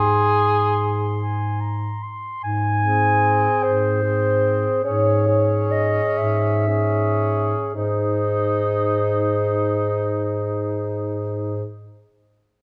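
Tender and lyrical, this brief fragment of a longer classical piece for single-reed quartet moves in an unhurried, rubato 6/8, slowing from 1.2 to 7.7 seconds. A dark, soft-attacked clarinet carries the melody above a clear, roomy second clarinet and a warm tenor saxophone with light vibrato that sits back in the distance as accompaniment. Beneath them, a punchy, close-miked bass clarinet holds a single low note up front, while the harmony darkens to a minor chord over that bass at 4.8 seconds before returning home at 7.7 seconds, all set in a moderate recital-hall reverb.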